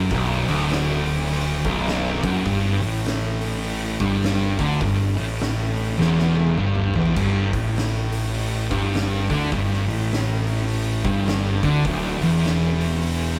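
A band playing together in one room, with moderate studio reverb, drives this brooding, sludgy stoner and doom metal excerpt at 102 BPM in a swung 4/4, as a dark, distorted fuzz guitar up front and a warm second fuzz guitar in the background grind out a riff over Bm, G5 and D5, a round fingered bass thickened by overdrive and tube saturation rumbles beneath, and an oversized low-tuned acoustic kit with a fat snare, punchy kick and gritty, saturated room sound plays a drum fill from 6.0 to 7.2 seconds.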